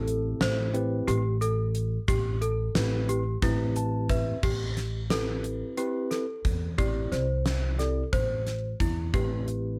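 Progressive instrumental band music in 7/8 with a tense, intricate mood, heard in a short excerpt cut from a longer piece. A mellow, clean tine electric piano carries the accompaniment alongside a delicate, bell-like celesta playing arpeggios, its sweet tone slightly out of tune and dressed in slapback echo and plate reverb. A woody, thumpy pizzicato upright bass and a polished, gated 80s drum kit with a fat snare, tight kick and bright cymbals sit up front, while a grainy egg shaker adds a very quiet layer until 4.1 s, and the electric piano plays a fill from 3.4 s leading into a new section at 4.4 s.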